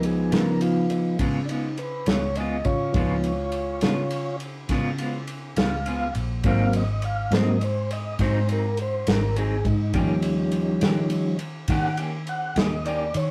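Slow blues in 12/8 at 69 BPM with a soulful, rollicking mood, led by a mellow, flute-like tonewheel organ with key click and slow rotary speaker holding sustained chords up front through Db7, Ab7 and Eb7, over a round, punchy foam-muted electric bass, a dark, tight soul drum kit with kick, snare and ride, and a clean picked electric guitar with tremolo, all heard in a short cut from a longer piece with a rough rehearsal-room sound, small-room reverb and warm saturation.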